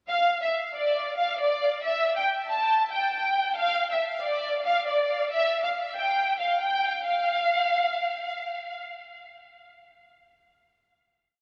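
A bowed violin section opens the piece at 0.1 seconds, playing a looping melody between D5 and A5 that repeats like a sampled loop over a half-time trap and hip hop pulse at 138 BPM in 4/4. The mood is menacing and brooding, and the strings sound lush and expressive, with vibrato giving the ensemble a rich, singing quality. A low-pass filter and tape echo soften the violins, so they feel distant even though they sit up front in the mix. The violins carry the breakdown alone until 7.0 seconds, when the final note begins; they stop at 8.3 seconds, and the piece closes at 10.5 seconds. A moderate echo chamber reverb gives the whole piece an echo-heavy atmosphere, and lossy compression artefacts add a slightly worn edge.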